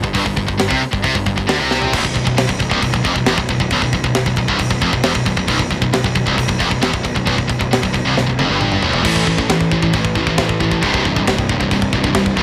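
A tight, gritty metal drum kit with a high-tuned snare sits up front in this heavy, relentless heavy metal excerpt at 135 BPM, with a fill at 1.7 seconds, while two bright high-gain guitars hammer out riffs in the background over a growly fuzz-driven bass, a very quiet, double-tracked sludgy guitar joins at 5.5 seconds, and light reverb surrounds the parts as the chords move from G5 through Cmaj7/B to A5 and C5.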